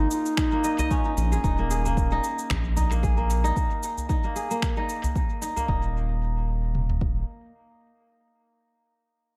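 Hypnotic and mystical, this organic downtempo excerpt at 113 BPM in swung 4/4 opens with a distant, vibrato-laden duduk phrase on dub echo that ends by 1.1 seconds, while a bright, ringing kora plays fingerpicked, tape-echoed arpeggios up front over a round, nasal analog bass with tube saturation and sidechain pumping, joined by an organic electronic drum kit with a deep kick and toms, tape-echoed electronic shaker and finger snaps re-recorded in a large room, and a dry udu in the background, until the crisp kora rings on alone to 7.5 seconds in an echo-heavy mix.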